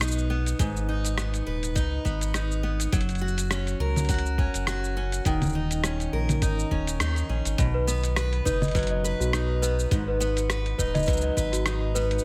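A gently swung 4/4 groove of muffled, pitched-down sampler drums with congas, hi-hat, rim click and shaker, joined at 0.6 seconds by a thumpy electronic kick, carries this playful, pastoral folktronica excerpt, where a bright, boxy picked steel-string acoustic guitar plays arpeggios through delay over a round, dark analog bass, and a delicate, bell-like celesta enters at 7.7 seconds with a second line, everything set in digital ambience, with a band accent at 7.0 seconds.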